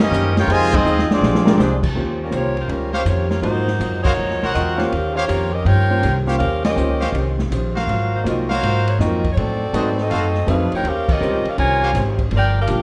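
A swinging 4/4 at 162 BPM drives this joyful, energetic big band excerpt in Eb mixolydian, with woody pizzicato upright bass up front and a dark, boomy open drum kit playing a fill from 0.8 to 1.6 s. In the opening bars a clear trumpet section carries the melody over a trombone second line and very quiet sustained saxophone chords, while a clean, compressed hollow-body electric guitar and a natural concert grand with deep bass fill in the harmony. From 2.2 s a warm saxophone section with vibrato takes over the melody up front, punctuated by bright trumpet stabs and full band accents, all set in a moderate recital hall reverb over chords moving through Eb13, Ab13 and Adim7.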